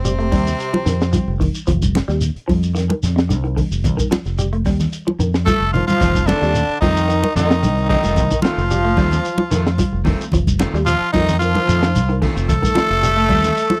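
A raspy, growling tenor saxophone carries the melody up front in this driving, hypnotic afrobeat excerpt at 111 BPM in F mixolydian over an F7 chord, joined by a tight, brilliant trombone section and a very quiet, scooped growling trombone, with the horns sounding briefly at the start and returning at 5.5 seconds alongside a drum fill, while a twangy, lo-fi electric guitar through a small old amp picks phaser-tinged arpeggios, a round fingered electric bass sits up front, a crunchy, saturated breakbeat kit with punchy kick and high-tuned snare pairs with thick-skinned congas and a grainy shekere, and a dark electric guitar at the edge of break-up adds background stabs from 6.0 seconds, all in a dry, close 1970s-style studio sound.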